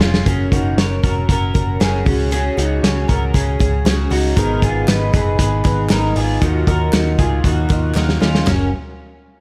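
A slightly broken-up electric guitar through a small old amp spins lush-chorused arpeggios over a punchy, muffled indie drum kit (with fills at 0.0 and 8.0 seconds), a dark, round, foam-muted bass, a bright, shimmering twelve-string acoustic, and a reedy, very quiet tremolo electric piano in this breezy, youthful jangly indie pop excerpt at 117 BPM in F# major, where crisp group handclaps join at 4.9 seconds over chords moving from F# through C#sus4, G#m and D#madd9, all in a light reverb.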